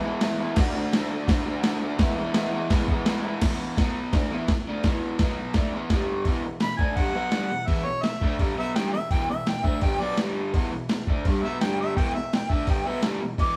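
Recorded live in one room with a moderate stone-room reverb, this rowdy, raw garage rock excerpt at 169 BPM rides a crunchy, double-tracked overdriven electric guitar riff shifting among E, D, E5, B5 and G5 chords, pushed along by a gritty, compressed sampler-style drum kit with a thumpy kick, medium-tuned snare, hi-hat and crash, until a clear, close-miked harmonica with overdrive, light vibrato and scooped notes enters at 6.6 seconds for a solo.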